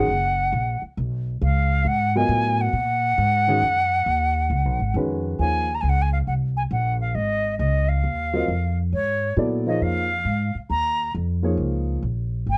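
Intense and spiritual, this modal jazz excerpt swings at a brisk pace, its harmony resting on a suspended ninth chord before shifting up to another at 5.4 seconds. The concert flute carries the melody throughout, its airy tone colored by vibrato and tonguing, sounding expressive yet slightly distant while still sitting up front. Beneath it, the upright bass is plucked on steel strings with a growly, woody character, holding the low end for the full length. The upright piano supplies a natural, short-sustained accompaniment, dropping out at 5.7 seconds and returning at 8.3 seconds. Captured with close, detailed microphones and very little reverb, the trio sounds immediate and intimate.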